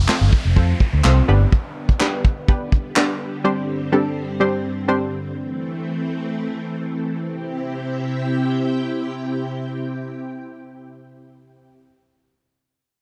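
A shimmering string-machine violin section with ensemble chorus and sidechain pumping opens this upbeat, euphoric dance-pop excerpt at 125 BPM in C major, sounding together with a dark, round, foam-muted electric bass that stops at 1.4 s and an electronic downlifter. A punchy, detuned sawtooth chord stab with chorus enters alongside a small-room brush drum kit of tight kick, snare and handclaps. The drums stop at 3.1 s while the stab carries on as the chords move from F and G to Csus2/G, and the stab ends at 5.2 s just before the shift to Am. The strings sustain alone into the second section at 7.3 s, arriving on C in a dry, close 1970s-style studio sound.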